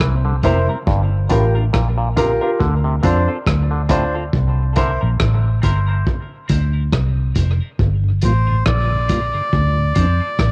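Spacious and meditative, this short dub reggae excerpt at 69 BPM with a swung 16th feel rides a dark, round, punchy muted bass and a muffled, tight-kicked vintage kit of hi-hat, kick and rim click under a filter sweep, while an overdriven, nasal clav plays arpeggios until 4.9 seconds, a woody upright piano adds stabs, a compressed clean electric guitar with lush chorus sits in the background, a flute-like tonewheel organ with key click returns at 8.0 seconds, and a reedy, breathy melodica carries the melody from 8.2 seconds, with tape echo on every part except the bass and drums, all set in the light reverb of a home cassette recording.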